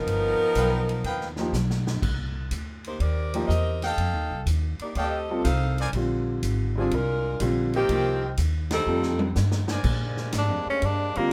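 Big band swing with a joyful, energetic drive, this brief cut from a longer piece opens with a warm saxophone section carrying the melody over a woody, growly upright bass plucked up front and a swinging drum kit that sounds natural in a big room, its boomy kick and medium-tuned snare underpinning the groove. Bright, tight trumpet stabs join at 0.6 seconds, and a clear baby grand piano with long sustain adds accompaniment shortly after, while the drums slip in fills along the way. The harmony moves from an altered dominant through minor seventh and ninth chords, and a band accent near the end of the opening passage is followed by a second drum fill. At 9.9 seconds the music shifts as a distant, roomy saxophone section holds sustained chords, and a punchy, forceful tenor saxophone soon steps forward for a short, vibrato-rich solo. Light reverb gives the ensemble a sense of space throughout.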